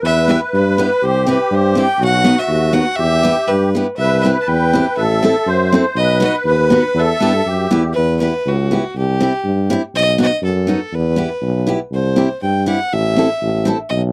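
A jolly, bouncy alpine folk dance-band excerpt in E harmonic minor at 121 BPM in a loose, rubato 2/4 opens with a biting, up-front fiddle carrying the melody with airy bow and light vibrato, a shimmering, reedy musette accordion on the second line until 7.9 s, and a roomy, classical-style tuba bass with its own vibrato, joined at 0.3 s by a picked steel-string acoustic guitar accompaniment with audible finger squeak, all captured in a dry, close 1970s-style studio sound over a repeating Em, C, B and Am progression.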